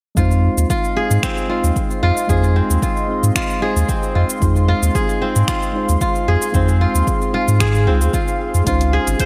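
Earthy and warm, this organic downtempo piece, cut from a longer work, moves with a light swing as a bright, ringing kora plays crisp fingerpicked arpeggios up front over a deep, round sub bass and a punchy layered electronic kick. Muted, felt-like synth keys with a dark, intimate tone and a delayed, filtered sheen pump alongside a smooth, mellow analog pad in the background, while a deep house kit of cabasa, finger snaps and hi-hat sits under gated reverb. The harmony rests on Fm7 before shifting to Dbmaj7 at 8.7 seconds, all within a lush hall and a bright 1980s-style digital sound.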